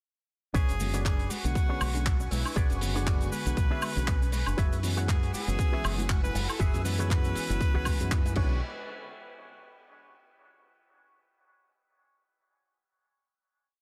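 A punchy four-on-the-floor electronic kick and a round, tube-saturated fingered bass with an envelope filter launch this cosmic, sensual nu-disco drop at 0.5 s, swung lightly at 119 BPM in B dorian, together with a bright, close-miked tenor saxophone stating hook phrases through dub echo, a dark, clean funk guitar riff with envelope filter and analog chorus, a lush detuned pad pumping behind it all, and a very quiet pluck arpeggio. A damped 70s kit lays down a dry disco backbeat with handclaps, hi-hat, cabasa, woodblock and crash from 0.6 s, worn, lightly overdriven electric piano stabs follow at 0.8 s, and distant, soft-handed congas slip in at 4.7 s before a final hit at 8.6 s closes the piece.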